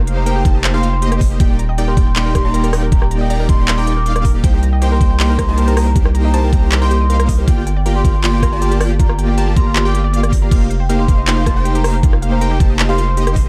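A half-time 4/4 groove at 158 BPM drives this dreamy, bittersweet future bass excerpt, built on a knocking, up-front electronic kick and a layered pop drum kit of crisp hats, handclaps, rim clicks and crash cymbal, tuned to A4 = 438 Hz over chords moving from F9sus4 through Ebmaj7, Cm7 and Gm7. A thick, saturated sine sub bass and a fat, detuned sawtooth polysynth riff with subtle chorus both pump against the sidechain, while two lush unison plucks sit in the background playing arpeggios, one filtered through a phaser and the other warbling and vintage with a noise layer and digital delay. Above them, a mellow soft-mallet vibraphone with its motor off rings out the melody through delay, and the mix sits in a dark digital ambience.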